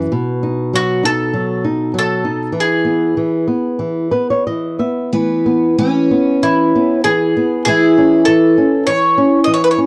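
A dark, fingerpicked flamenco guitar with audible finger squeak opens this tender, nostalgic fado-style ballad in E major at a loose, rubato 95 BPM, joined up front at 0.8 seconds by a bowl-back mandolin singing the melody on its picked double strings, before a nylon-string guitar fill arrives at 3.8 seconds and a picked twelve-string acoustic guitar adds a shimmering, octave-doubled second line from 5.1 seconds, all set in a dry, close 1970s-style studio sound with a touch of small-room reverb.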